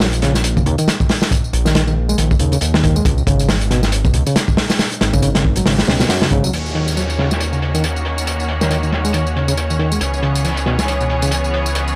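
Breakbeat at 138 BPM in Eb phrygian, an energetic, funky cut from a longer piece, built on a crunchy, saturated breakbeat kit with a punchy kick and rolled-off top, a tape-warm electronic tambourine, a fat, detuned wave-folded analog bass, and an overdriven, reedy electric piano riff pushed through a combo amp with tube saturation and tape echo. At 6.5 seconds a bright, biting symphonic string section enters with lush bowed chords and sidechain pumping, while an electronic downlifter sits in the background until 10.0 seconds. The sound is dry and gritty, with the harmony moving from Eb7(no3) and Db7(no3) into Ebm7 and Dbm7.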